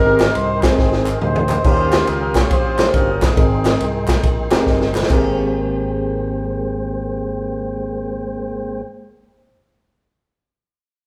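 Uplifting and reverent, this uptempo gospel excerpt swings at 139 BPM in Ab major, with a mellow, tight horn section carrying the melody until 4.7 seconds over bright tine electric piano, a flute-like tonewheel organ turning through a slow rotary speaker with chorus vibrato, and a warm fingered electric bass moving between Abmaj9 and Eb9. A swinging big-band drum kit with a punchy kick and medium-tuned snare drives the groove with fills, alongside very quiet, crisp group handclaps; the drums drop out at 5.2 seconds and the handclaps just after, leaving piano, organ and bass to finish. The band sounds like it is playing live in one large studio room, with a moderate reverb giving the horns and drums a distant, roomy quality.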